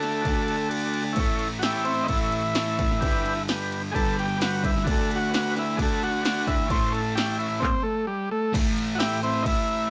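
A punchy analog drum machine drives a straight 4/4 at 130 BPM with kick, snare, handclaps and crash, its kick and snare dropping out from 0.7 to 1.2 seconds during a quick transistor combo organ fill. This raw, swaggering garage rock fragment in A mixolydian moves through D, A and G before landing on A5. Up front, a thick, double-tracked fuzz guitar riff and the buzzy organ melody with light vibrato sit over clean, sustained combo organ chords that stop at 7.5 seconds, all in a rough rehearsal-room sound with saturation and small room reverb.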